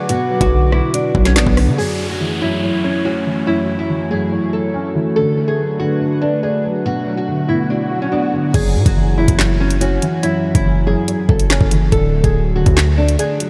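A half-time drill groove in 4/4 opens this dark, menacing hip hop fragment, its overdriven electronic kit putting a knocking kick, a woody snare, bright hi-hats, rim clicks, handclaps and a crash cymbal up front beside a punchy, heavy 808-style bass with a fast attack and a decaying sine tone edged by a noise layer. At 1.8 seconds the drums and bass drop away, leaving a fingerpicked nylon-string guitar carrying the melody through subtle chorus, tape echo and a low-pass filter, its old strings giving a small, acoustic colour. Beneath it a felt-muted upright piano plays soft, intimate accompaniment through lush chorus, its thick felt and audible action noise lending a mellow, shadowy character, while a hollow, flute-like pad holds slow-attack chords. Electronic downlifter and swell effects fill this middle stretch, with the swell leading into the return of the beat and bass at 8.5 seconds, where the pad falls away. 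A huge ambient reverb soaks the mix in a dreamy haze, and the harmony moves from minor chords through a sixth chord and a minor seventh to a bare, third-less seventh before settling on a major chord.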